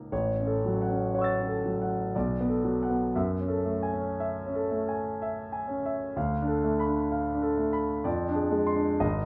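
An A6 chord opens this serene, dreamy impressionist solo piano fragment in A major, a concert grand heard clear, open and up front, with a deep bass reaching down to G#1. At a rubato 61 BPM in 3/4 with uneven beats, the harmony drifts through Bm7, F#m9 and Dm6 before settling on Fm6 at 8.1 seconds, ranging up to A6. A moderate recital hall reverb surrounds the sound across the brief 9.3-second span cut from a longer piece.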